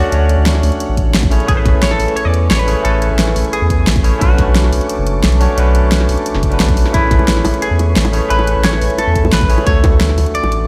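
This excerpt of dreamy, lush liquid drum and bass opens with a clean, picked semi-hollow electric guitar carrying the melody through spring reverb and tape echo, alongside a bright, barky tine electric piano trailed by dub echo. Beneath them, a deep, thick sub bass sits up front with tube saturation, while a glassy, warbling FM pad with ensemble chorus hovers very quietly in the background with slow, sustained chords. At 176 BPM in a straight 4/4, a produced pop kit with a fat snare and bright hi-hats comes in almost immediately, and a punchy, layered electronic kick joins at 1.0 seconds. Round, low-tuned bongos, close and dry, slip in at 7.2 seconds. The harmony drifts in A major through Dmaj7, Amaj9 and Bm9 before returning to Dmaj7, and the mix carries the light ring of a bare stone room heard through a big sound system.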